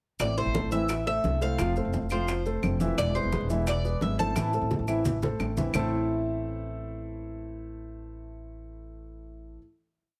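A straight 4/4 groove at 173 BPM anchors this short, nostalgic piece of Cuban son and guajira in A harmonic minor: woody claves tap out a two-bar time line, bongos play steady eighths with hand bell, congas with a thick skin mix slaps and open strokes, and grainy maracas shake softly in the background. Up front, a thumpy pizzicato upright bass on gut strings plays a dark, syncopated figure, while a picked Cuban tres with metallic double strings, some doubled at the octave, carries a motif-based melody of call phrases. A dark flamenco guitar, thumb-plucked and strummed with muted slaps, fills in the accompaniment, and a warm grand piano plays a montuno in octaves. The harmony moves through Am, F and E7 before returning to Am, where a drum fill runs from 4.4 to 5.7 seconds. The tres and percussion then fall away, leaving guitar, bass and piano to sustain a final chord that rings until 9.6 seconds, captured with close, detailed microphones and light reverb.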